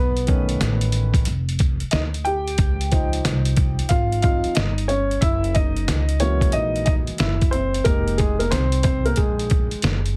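A dark, mellow upright piano takes the lead from the start, sitting up front over a woody pizzicato upright bass, as the piece drifts through B9, Dbmaj7, Gb13 and Fm7 in this nocturnal jazz-hop groove cut from a longer track. At 0.2 seconds a gritty, pitched-down, sampler-style trip hop kit joins with a thumpy kick, medium-tuned snare and hi-hat, swung on the sixteenths and sounding re-recorded in a small room. The mix is dry and heavily compressed, giving it a squeezed, radio-like sound.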